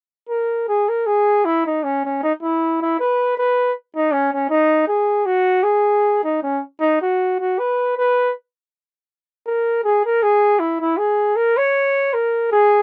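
Alpine folk in a jolly, festive mood, carried by a lone flugelhorn that plays from 0.3 s to 12.8 s in 3/4 with a gentle swing and a free, rubato feel. The horn is warm and roomy, played in a classical style with light vibrato, and sits up front in the mix. The sound is that of a dry, close 1970s-style studio recording touched with light reverb, and the passage is cut from a longer piece.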